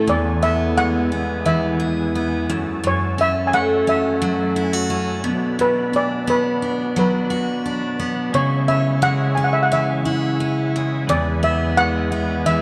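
A bright, up-front jumbo acoustic guitar with fresh strings and audible finger squeak carries the accompaniment in this heartfelt, easy-going acoustic pop piece at 87 BPM, moving through E, F#m, Bm and C#m before settling back on E. From 0.1 s a mellow double-seconds steel pan, played with soft rubber sticks and carrying a vintage, band-limited shimmer, sings the melody, while a gritty, overdriven tonewheel organ with key click, percussion and chorus vibrato holds thick sustained chords in the background. The music sits in a vast, echoing cathedral reverb and is cut from a longer piece.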